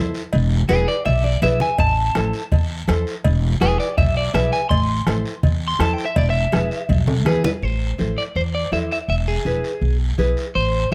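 A twangy, slightly broken-up electric guitar with spring reverb carries the melody up front in this driving, fiery cumbia, riding over a full-bodied, fingerpicked nylon-string guitar and a woody pizzicato upright bass as the chords alternate between E and A minor, while raspy guiro, bright background congas, ringing cowbell and timbales that stop at 7.5 seconds, and a soft-beatered, vintage-sounding bombo entering at 1.8 seconds fill out the percussion, with a drum fill leading into the second section at 7.6 seconds.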